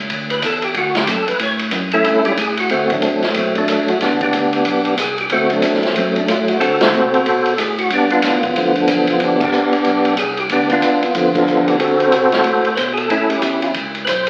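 A percussive tonewheel organ carries the melody up front, its key click and chorus vibrato cutting through a slow rotary speaker, in this swinging, soulful soul jazz organ trio fragment in D mixolydian at a brisk 185 BPM. A fat, clean tonewheel organ holds down the bass in the background, while an acoustic jazz kit with dark cymbals, a medium-tuned snare and a boomy kick sits up front, and the band hits accents at 6.8, 9.4 and 11.3 seconds. The whole track is bathed in a wet studio reverb and carries the crackle of a very old 78 rpm record.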